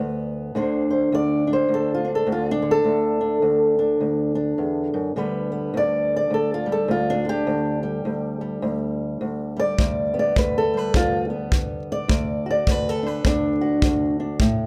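A loose swing on the eighth notes in 4/4 carries this laid-back, soulful slice of acoustic country blues, cut from a longer piece. A fingerpicked old ladder-braced acoustic guitar holds the melody from start to finish, sitting up front with a dark, woody, boxy tone and the dull bite of old strings, set in a plate reverb. The harmony moves from a D7 colour toward G and settles back on D. At 9.8 seconds a punchy acoustic kick drum joins, also up front, played with brushes and carrying a small-room character. The whole recording sits in a moderate studio space, giving the duo an intimate, unhurried feel.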